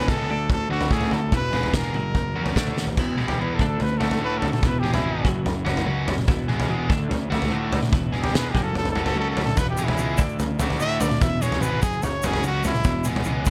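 A brilliant trumpet with light vibrato and scooped notes leads this jangly, upbeat indie rock excerpt in E mixolydian at 146 BPM, carrying the melody in a pop-style solo that plays from 0.0 to 5.3 seconds and returns at 8.2 seconds over chords moving among D, E and F#. Beneath it, a biting overdriven guitar and a twangy, compressed twelve-string electric guitar with analog chorus play riffs, while a round, fuzzed picked bass sits in the background. The loose, up-front drum kit pairs a fat snare and punchy kick with dark cymbals in a pumping room, marking a fill at 2.8 seconds, and a grainy egg shaker joins at 9.6 seconds, all under light reverb.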